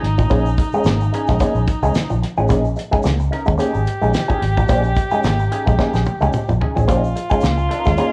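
A band playing live in one room, with cassette-tape grit and a moderate large studio reverb, opens this hypnotic, cool funk excerpt at 110 BPM in 4/4, with lightly swung 16ths and a vamp on Bbm7 in B-flat dorian. The foam-muted fingered bass sits round and punchy up front beside a dry, damped 70s kit with a fat snare and tight kick, which breaks into a fill from 5.8 to 6.9 seconds, while a grainy egg shaker enters at 0.2 seconds in the background. Above them, a scooped, twangy envelope-filter guitar picks a riff, a dark hollow-body jazz guitar adds wah-tinged accompaniment, and a forceful, vibrato-laden baritone saxophone plays a second line.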